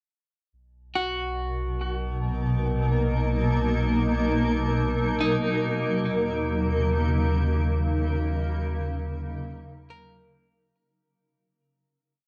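A round, dark analog bass with transformer saturation opens this serene, weightless ambient piece at 0.5 s, soon joined by scattered, compressed notes from a clean electric guitar treated with cassette tape, analog delay and plate reverb, while an up-front granular cloud pad of blurred, slowly shifting chords moves from Bmaj7 to D#m7 in a short, wet booth ambience before the home-recorded piece fades out from 7.3 s, the guitar returning briefly at 9.9 s.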